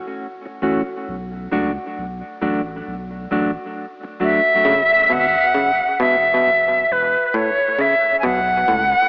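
A mellow, dark electric guitar opens this hypnotic, deep reggae fragment at 0.5 s with a clean, fingered accompaniment soaked in dub echo, while a soft, round sub bass settles underneath from 1.1 s on a sustained, fast-attack tone. At 4.2 s a reedy concert flute takes the melody up front, airy with gentle vibrato and rolled-off highs, and from 4.7 s a muted, stringy clav adds percussive, overdriven arpeggios that also trail off into dub echo. The swung groove sits in an echo-heavy mix with a lush spring reverb and a lo-fi AM radio character.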